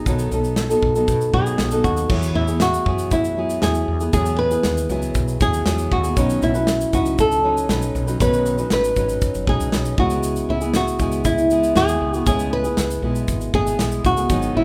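An up-front flamenco guitar carries the melody in this carefree, sunny acoustic pop excerpt at 118 BPM in E major, over a full-bodied fingerpicked steel-string acoustic guitar, a round and punchy woody fretless electric bass, and a modern studio drum kit with a tight kick, medium-tuned snare, shaker and crash cymbal, all set in a moderate recital-hall reverb as the chords move from B7 to Eadd9 at 2.1 seconds, then Badd9 and C#m7.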